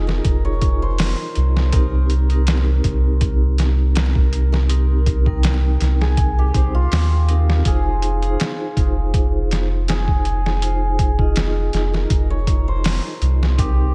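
A swung, gritty sampler-style drum kit, overdriven and pitched down with a thumpy kick and medium-tuned snare, drives this brooding, melancholic trip hop fragment in F minor at 81 BPM, where a deep, round dub sub bass sits up front beneath a dark vibraphone with tremolo and a shimmering hammered dulcimer melody roughened by 12-bit sampler grit, both trailing tape echo as the harmony moves from Fm7 to Cm7 and returns to Fm7 at 7.7 seconds in a light reverb.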